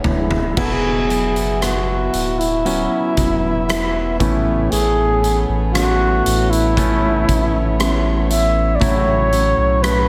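A mellow flugelhorn carries the melody in a smooth, jazz-tinged voice, shading its notes with vibrato and gentle scoops over the top of this tender, emotional pop ballad, cut from a longer piece. Beneath it, a round, deep sub bass sits up front, while a huge arena drum kit opens with a quick fill in the first 0.6 seconds before settling into a punchy kick, rim clicks, hi-hat, toms and crash cymbal. In the background, a polished baby grand piano and a dark, full-bodied fingerpicked jumbo acoustic guitar, both touched with slapback echo, spin out accompaniment and arpeggios. A tight, stopped French horn section adds nasal, metallic sustained chords in a classical manner. The harmony moves from E7 to Esus2, then to Aadd9 around 4.2 seconds, all set in a concert hall reverb that gives the whole a big arena scale.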